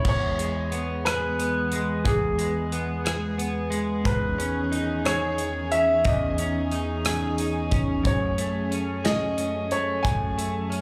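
Six-eight pop ballad in E major at a swaying, tender 60 BPM, cut from a longer piece and heard as a live gig through the venue's PA with club reverb, moving from E to C#madd9/E at 4.1 seconds and F#madd9 at 8.1 seconds. A clear, natural grand piano carries the melody up front with slapback and tape echo, while a direct-recorded clean electric guitar, picked, compressed and double-tracked with slapback echo, gives a warm accompaniment. Beneath them, a dark studio string section holds soft-attack sul tasto chords with light vibrato, and a small-room country drum kit with a punchy kick, medium-tuned snare, rim click, hi-hat and crash sits up front in the mix.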